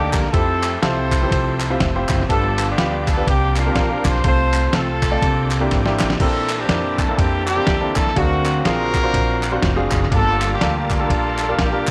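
Reverent and uplifting, this uptempo gospel passage at 123 BPM in F major swings along as a clear, up-front jazz horn section carries the melody over an intimate concert grand piano with audible action noise, a woody pizzicato upright bass with transformer saturation, a muffled, thumpy lo-fi sampler-style drum kit that drops a fill at 5.7 seconds, distant crisp group handclaps, and a very quiet, lightly overdriven tonewheel organ with key click and rotary speaker that adds a fill at 9.1 seconds, all in a small room, through rich chords like Fmaj9, D7alt and Gm9.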